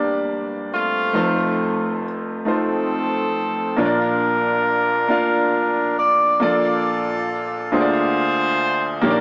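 In a straight 6/8 lilt at 46 BPM counted in dotted quarters, this uplifting, jubilant gospel passage in B-flat major, cut from a longer piece, sets a warm, roomy, tight jazz-style horn section carrying the melody through tape echo over a clear, intimate baby grand piano whose action noise can be heard as it accompanies from Gm through F7 to Bb before moving to Bbmaj7 at 6.4 s, all in a wet studio ambience with a small-speaker sound.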